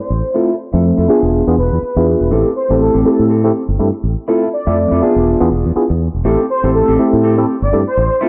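Swung sixteenths drive this sensual, nostalgic house fragment, where a bright, growly fingered electric bass sits up front beside a worn, slightly out-of-tune tine electric piano through a phaser, a dark, picked clean electric guitar riff and a fat, warbling analog synth brass melody with chorus and tape echo, while a filter sweep runs through the full 8.3 seconds, moderate plate reverb surrounds the mix, and the chords cycle from Fmaj7 through E7b9 to Am7.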